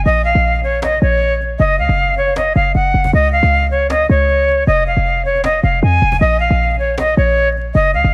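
A bright, reedy jazz flute carries the melody up front, its airy vibrato and soft attack trailed by delay, over a punchy, tight 808-style bass and a snappy cajon with snares tucked into the background. This short hip hop and trap excerpt at 156 BPM moves in a half-time feel through Bbm, Gb5, Db and Fm, striking a mood that is both triumphant and wistful. The dreamy mix is soaked in plate and small-room reverb, with a layer of vinyl crackle.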